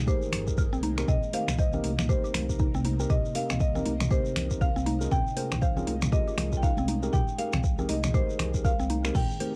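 A bright, hard-mallet marimba melody opens this driving, spiritual afro house excerpt at 119 BPM in C phrygian, floating over an ethereal, airy pad of sustained chords and a deep, rumbling detuned saw bass, all three sounding from the first moment. Almost at once a deep electronic kick sits up front, joined by high-tuned congas in the background, a grainy shekere, a woody, round synth pluck tracing arpeggios and a clean tine electric piano playing stabs. From 0.3 seconds a layered deep house kit adds metallic, overdriven hi-hats along with crash cymbal, finger snaps and toms, all moving with a swung 16th-note feel. The bass, pluck, electric piano and pad pump against the kick through sidechain compression, while the pad also carries ensemble chorus, phaser and its own reverb, and the marimba, pluck and electric piano trail analog delay. The harmony settles on Cm7 after an opening rootless Fm11/C and returns to Fm11/C at 7.1 seconds, and a tight, cracking djembe is barely audible near 9.1 seconds. 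The whole carries the light reverb of a home cassette recording.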